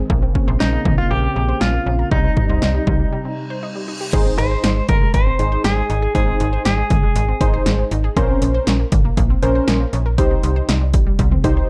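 A punchy analog drum machine drives this wistful, nostalgic synth-pop passage at 119 BPM in a straight 4/4, its kick, snare, hi-hat, toms and crash given an overdriven edge and placed up front beside a snappy FM bass with a metallic, slap-like attack. In Ab major, a brassy, bold pad holds sustained chords with chorus and vibrato through the opening, while a bright analog pluck ripples arpeggios in the background, its detuned sawtooth tone carried on chorus and slapback echo. A twangy, direct-recorded clean electric guitar carries the melody, picked and compressed, shimmering with harmonic tremolo and its own slapback echo. A short break arrives at 3.1 seconds, marked by an electronic reverse cymbal, and at 4.1 seconds the pad gives way to round, mellow analog keys with a sub octave and filter sweep that take over the accompaniment. The dark, warm production keeps reverb to a minimum, and the chords move from Bbmadd9 to Cm and on to Ab, then return through Bbmadd9 and Cm before the excerpt is cut off.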